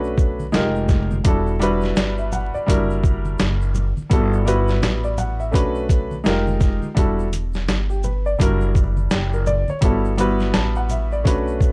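A sampler-style boom bap drum kit sits up front in this smoky, mellow jazz-hop excerpt, its compressed, pitched-down sound pairing a thumpy kick and a medium-tuned snare with hi-hat and shaker from 0.2 seconds. The hip hop groove moves at 84 BPM in 4/4 with a lazy 16th-note swing. A woody upright bass played pizzicato on gut strings holds the low end, also up front, while a dark grand piano with a smooth, vintage tone and short sustain carries the accompaniment. Tube shaker and congas add close, acoustic colour in the background. The harmony cycles through Bm9, Fm11, Em11, F#7b9b13 and Gmaj13 twice. A small room reverb, vinyl crackle and a dry, gritty hardware character give the whole fragment a dusty, lived-in feel.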